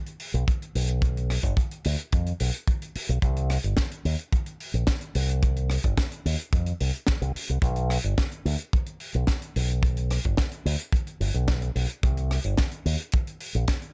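This nu-disco excerpt has a sleek, sensual mood and a straight groove in 4/4. A tight acoustic funk drum kit opens at 0.1 seconds with hi-hat, rim click and a high-tuned snare, all captured naturally in a small room. A fingered electric bass joins at 0.3 seconds, running through an envelope filter for a bright, punchy, direct tone that sits up front and moves between G1 and F2. A tight acoustic kick drum enters at 0.5 seconds, also natural and forward in the mix. The sound is dry, with little reverb, and the bass and kick carry more weight than the lighter kit.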